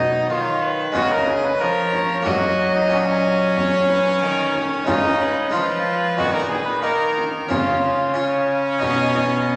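A courtly, rustic renaissance-style consort dance in 4/4, cut from a longer piece, in which a clear cornet with light vibrato carries the melody up front while a rich, gut-string violin plays a close second line, an airy, plucked harpsichord sits in the background, a nasal, distant cello holds the bass, and a deep frame drum enters at 0.9 seconds, all set in a recital hall with a 1.5-second reverb.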